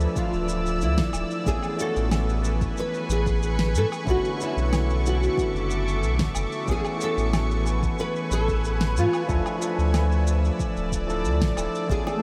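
Sunny and smooth, this sunset chillout excerpt moves at a relaxed 92 BPM in a straight 4/4, drifting through Dmadd9, Amaj9 and Bm11 chords. A fingerpicked nylon-string guitar carries the melody from 0.2 s, its deep classical tone wrapped in ensemble chorus, tape echo and shimmer reverb. Beneath it, an overdriven tine electric piano plays barky, gritty accompaniment through a combo amp with analog delay, while a shimmering ambient pad holds ethereal, detuned, warbling chords high above, coloured by vintage 12-bit sampler grit and an octave-up shimmer. A round, sine-like sub bass with tube saturation sits up front, and a deep, tape-warm electronic kick stays in the background alongside a layered electronic shaker, fat snare and woodblock re-recorded in a small room. At the very end, bright, close bongos appear briefly and a twinkling, sparkling granular texture arrives at 12.2 s, all set in a dreamy mix soaked in huge ambient reverb.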